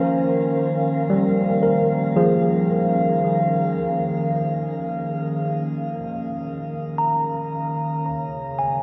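A slow, straight 4/4 pulse at 56 BPM sets an unhurried pace for this reflective, serene ambient fragment, tuned slightly low to A4 = 436 Hz. Up front, a warbly, tape-like pad holds sustained chords with a nostalgic, lo-fi, dark character, softened by chorus and a glimmering shimmer reverb. Beside it, a worn, slightly out-of-tune tine electric piano plays arpeggios, lightly overdriven and trailed by delay and shimmer. An airy, breathy, wind-like noise texture sits far in the background until 3.8 seconds. At 5.4 seconds a velvety, mellow synth lead enters quietly with a smooth, vibrato-touched melody through chorus and delay. The harmony rests on Eb7sus4 before shifting to Bbm7/Db at 8.1 seconds, all bathed in a huge, wet reverb.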